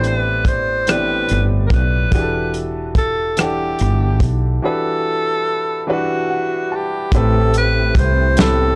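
Late-night and sultry, this slow six-eight R&B excerpt in A minor moves at 48 BPM, with a breathy, whispered tenor saxophone singing a scooped, vibrato-tinged melody up front over a clear, intimate baby grand piano that adds a fill from 5.9 to 7.1 seconds, a growly, woody fretless bass thickened by ensemble chorus, and a tight, rolled-off soul drum kit of hi-hat, kick, rim click and snare, while a very quiet, lightly overdriven tonewheel organ with slow rotary and key click joins at 7.1 seconds as the chords shift from Am11 and Em11 to Am9, all set in a small room with a cassette-tape sheen.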